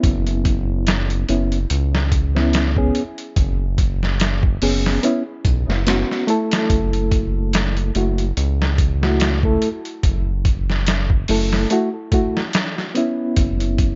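A loosely swung sixteenth-note groove from a compressed, pitched-down sampler-style drum kit sets the pace, its thumpy kick, medium-tuned snare and hi-hat sounding muffled and tape-warm, as if re-recorded in a small room. Beneath it, a round analog bass mixing sawtooth and sine tones with a ring-modulated, tube-saturated edge holds the low register, while a reedy, mellow electric piano with tremolo and tape echo plays chords that move from C#m7/F# to F#m7 and back. This melancholic, brooding trip hop excerpt has light reverb and a dark top end, with all three parts kept up front.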